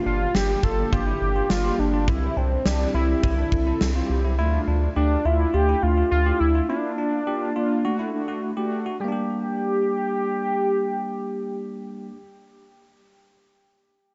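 In this cool, nocturnal synth-pop excerpt at 104 BPM in G dorian, a huge arena drum kit with a punchy kick and medium-tuned snare comes in at 0.3 seconds and drops out at 3.9 seconds, while a deep analog bass plays until 6.6 seconds, mellow detuned synth brass with chorus fills in the harmony, a bell-like tine electric piano plays arpeggios through tape echo, and a bold, retro octave-doubled sawtooth lead carries the melody with chorus, phaser and vibrato over light reverb as the chords move from Gm7 through Cadd9, Dmadd9 and Bb6 to D before settling on Gm at 9.0 seconds.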